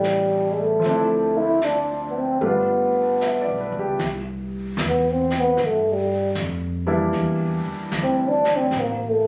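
Swung eighths at 76 BPM in 4/4 carry this intimate, tender jazz ballad in C major, cut from a longer piece, where a veiled, breathy cup-muted trombone sits up front on the melody and takes a solo from 4.0 seconds, backed by a smooth, woody upright piano that drops out at 8.7 seconds, a growly pizzicato upright bass and a vintage brush kit of brushed snare and hi-hat, all heard through light club reverb and compression as if caught on a phone in the room.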